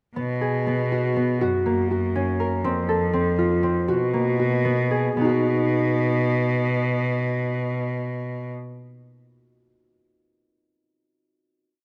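Restless yet hopeful, this short, complete piece of contemporary chamber music moves in an uneven 5/8 meter, with a concert harp ringing out a mellow, fingerpicked arpeggio ostinato in its middle register. Beneath it, a single bowed cello holds biting, intense bass notes with light vibrato, both parts sitting up front in a moderate recital-hall reverb. The music slows from 2.6 seconds and settles on a final chord at 5.2 seconds, which the harp lets ring until 8.9 seconds.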